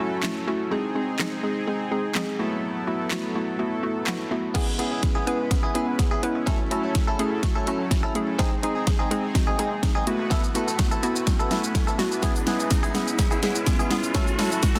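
Driving, confident dance-pop opens with a hollow, bouncy square-wave pluck pumping against smooth supersaw chords and punchy, up-front electronic drums with a fat, clipped snare, before a twangy, clean electric guitar riff enters at 4.5 seconds just as a build-up and drum fill begin, joined by a background riser at 8.0 seconds and a grainy, very quiet tube shaker at 12.2 seconds, all under light reverb and a dense, heavily limited master.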